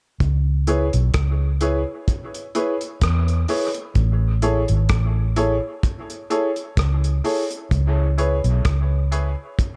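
Spacious and deep, this dub reggae excerpt moves in a relaxed 4/4 with a gentle swing on the sixteenths. A vintage fingered electric bass, dark, round and foam-muted, sits up front and carries the low end from 0.2 seconds. Beside it, a cloth-damped acoustic kit gives a thuddy, tight kick, hi-hat and rim click, its top rolled off. From 0.7 seconds a woody, slightly detuned upright piano adds stabs with audible action noise, thinned by a high-pass filter and thrown into dub echo, and a filter sweep passes over it from 4.0 seconds. The harmony moves from C#m7 to Amaj7 and back, and the echo-heavy mix sits in a modest room with light reverb and its highest frequencies trimmed.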